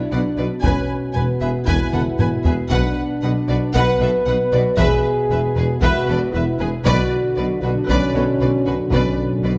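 A dark, distant French horn section holds sustained chords over warm trombones in this heroic, dramatic orchestral film-score passage at 116 BPM in B dorian, cut from a longer piece and moving between Bm and E. A close, expressive violin section carries the melody with portamento, supported by a focused second violin line, smooth, even violas, lush cellos, a clear double bass section and a mellow tuba on the bass. Hard-stick taiko drums enter at 0.6 seconds and play a fill at 1.9 seconds, round soft-mallet timpani join at 6.9 seconds, and a wet recital-hall reverb gives the whole a dark, warm sound.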